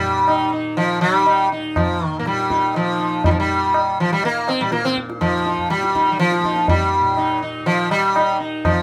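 Heard in a small room with a moderate touch of reverb, this brief Hindustani classical fragment, cut from a longer piece, has a devotional, radiant mood at 122 BPM in a straight 7/4. Up front, a plectrum-plucked sitar carries the melody between F3 and Eb4, its buzzing tone haloed by shimmering sympathetic strings. Beneath it, a softly plucked, warm tanpura sustains a low drone from Eb2 to Eb3, while a high-tuned tabla with a short ring enters at 0.3 seconds to keep the rhythm.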